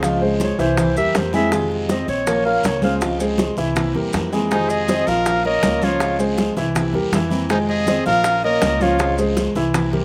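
Latin son in the guajira vein, this sultry, danceable 161 BPM passage in 4/4 is cut from a longer piece and settles into F minor from 4.5 seconds, cycling through Dbmaj7, C7, Fm7 and Bbm. A clear, soft-attacked clarinet carries the melody in a classical style from 0.4 seconds, soloing at the front over the band until a brilliant, punchy trumpet with vibrato and scooped notes joins as a forceful second line at 4.5 seconds. A dark, mellow concert grand sits up front with deep-bass arpeggios, beside a bright jumbo steel-string guitar whose picked chords carry fresh-string sparkle and finger squeak, while a woody, thumpy pizzicato upright bass with gut strings anchors the low end. Round low-tuned bongos struck with hard hands, damped thick-skinned congas played with soft hands and grainy vintage maracas sit in the background, and a raspy, distant guiro completes the percussion. The sound is dry and open-air, with slapback echo on the clarinet, piano, guitar, bongos and guiro.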